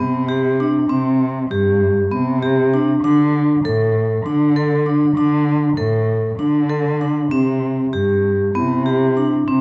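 Contemporary chamber music in 7/8 at 196 BPM (eighths), this hopeful, shimmering passage in C major, tuned to A4 = 445 Hz, is cut from a longer piece and sits in a moderate recital hall reverb with a dark production. Up front, a close-miked vibraphone played with medium hard mallets and motor off rings out bright, metallic arpeggios, while a single bowed cello carries the bass line with vibrato, portamento and a nasal, boxy voice. At 7.3 s a delicate, bell-like celesta with a vintage, band-limited tone joins in the background as the harmony moves from D5 to C.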